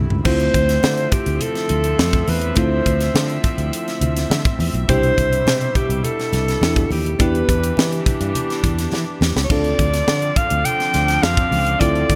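This 1980s jazz-funk pop excerpt, cut from a longer piece, opens on a bell-like, sparkling FM electric piano with subtle chorus, a bowed studio string section of reedy, gut-string tone holding sustained chords, and a growly, amped fretless bass, as a crisp fusion drum kit enters with a fill. Congas with soft hands and a thin, bright skin sit very quietly in the background, and at 0.3 seconds a breathy alto saxophone takes the melody up front, mellow and jazz-styled, with vibrato, subtone and scooped notes. The kit is also forward in the mix, with a high-tuned snare, punchy kick, hi-hat, crash and toms in an airy studio room, and a second drum fill arrives at 8.9 seconds. Underneath, the harmony moves from Dm9 to Cmaj7 and Em7 before returning to Dm9, giving the straight groove an urban, bittersweet mood. Light studio reverb and bright digital production give the whole track a period sheen.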